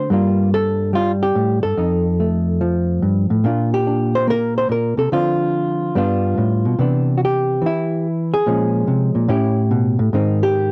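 A dark, clean hollow-body electric jazz guitar plays alone and up front from the first moment, its fingered, compressed tone carrying a playful, relaxed solo jazz passage in G minor at 144 BPM with a swung 4/4 feel. Ranging from F2 to C5, the guitar moves through a progression that opens on Gm9 and F7, then travels through Bb, Dm7, G7, Cmaj9, Bbm7 and A9 before landing on Abmaj7 near 10.1 seconds. The guitar carries the tint of cassette tape, and the whole home recording has a moderate booth ambience in this short fragment cut from a longer piece.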